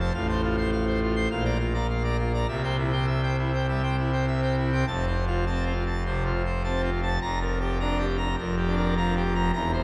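Jubilant and majestic, this classical organ toccata in F major moves at a straight 103 BPM in 4/4, with a solo pipe organ on full organ, its brilliant mixtures and romantic voicing sitting up front and spanning E1 to C6, bathed in a wet church reverb that rings for 3.4 seconds, as the harmony passes from F/A through Bb and C before settling on F at 4.9 seconds and Gm7/F at 7.2 seconds in this short cut from a longer piece.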